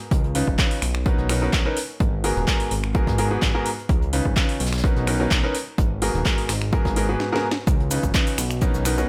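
Piano house with an energetic, bittersweet mood, built on a clear, up-front grand piano riff with sidechain pumping and digital delay, moving through rich ninth chords over a fat, detuned sawtooth bass with tube saturation and its own pumping. A punchy, overdriven electronic kick drives it alongside a layered house kit of cracking snare, metallic hats, shaker, finger snaps and handclaps, while a very quiet brushed acoustic kit adds natural small-room texture. A drum fill at 7.2 seconds leads into a drop at 7.7 seconds in this short cut from a longer track.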